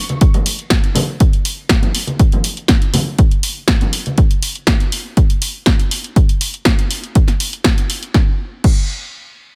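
Filtered disco house at 121 BPM in a straight 4/4, groovy and nostalgic, cut from a longer piece and set in a digital ambience. A punchy analog drum machine opens with its snare, hi-hat and crash cymbal sitting forward and the hats and cymbals pumping against the sidechain, and an up-front, tape-warm electronic kick enters just after to drive the groove. Bright, vintage congas and tambourine played with hard hands add a band-limited, low-pass-filtered shimmer that also pumps, dropping out at 4.2 seconds and leaving the kick and drum machine to carry on to 8.8 seconds.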